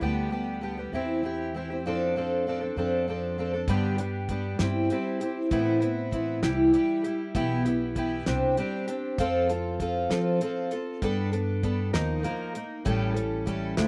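A dark, shimmering fingerpicked twelve-string acoustic guitar sits up front with its octave-doubled ring and audible finger squeak, joined from the start by a woody pizzicato upright bass in this gentle, warm acoustic folk excerpt in 6/8. At 3.7 seconds a cloth-damped, thuddy drum kit enters on hi-hat, a tight kick and a fat snare, its top end rolled off and its small-room sound tucked behind the guitar. The excerpt sounds dry and close, with little reverb, and its chords drift through unexpected turns such as Ebsus2 and A7 near the close.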